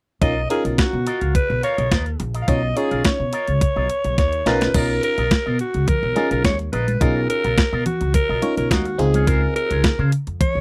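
A straight 4/4 boogie-funk groove rides on a clean 12-bit drum machine with a thumpy kick and medium-tuned snare, pushed up front with a woody pizzicato upright bass, in this smooth, feel-good fragment cut from a longer piece. A breathy, raspy alto saxophone with vibrato and slapback echo carries the solo melody over glassy, bell-like FM electric piano chords with chorus and a bright, twangy envelope-filtered guitar riff set lower in the mix. After a drum fill at 4.2 seconds, soft-handed congas enter in the background at 4.7 seconds, all captured in a dry, close 1970s-style studio sound.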